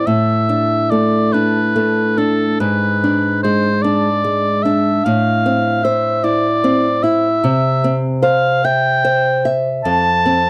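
This is a romantic duo for oboe and classical guitar, cut from a longer piece, in A minor with a melancholic, solemn mood. It moves slowly in 6/8 at roughly 47-51 BPM, counted in dotted quarters, with a rubato feel that lets the time breathe. A clear oboe in classical style carries the melody up front as the solo voice, singing between A4 and A5 with a present tone. Beneath it, a fingerpicked nylon-string guitar with a bright sound of fresh strings provides accompaniment across a range from F2 to E5, its small sound also placed up front. The harmony moves from D5/A through G#dim and Am to C, arriving on F at 9.8 seconds, and both instruments play throughout the 10.5-second span. The recording has the dry, close character of a 1970s-style studio, touched with light reverb.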